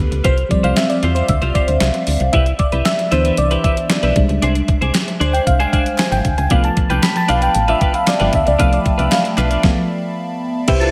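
Glossy, lightly reverberant digital ambience frames this romantic 1980s-style pop clip at 115 BPM in straight 4/4, where a lush, dreamy FM electric piano with a soft pad layer, treated with chorus and phaser, takes a solo over chords moving from Fsus2/C through Cmaj7 and Abmaj7#11 to G7. Up front, a punchy, round FM bass and a thumpy 12-bit drum machine, with fat snare, crash, hi-hat and tambourine under gated reverb, drive the groove. A clean, compressed twelve-string electric guitar plays a riff with subtle chorus and delay, and a very quiet, crisp group handclap adds texture; a stop arrives at 9.6 seconds before a distant, roomy horn section lands a brief stab at 10.8 seconds.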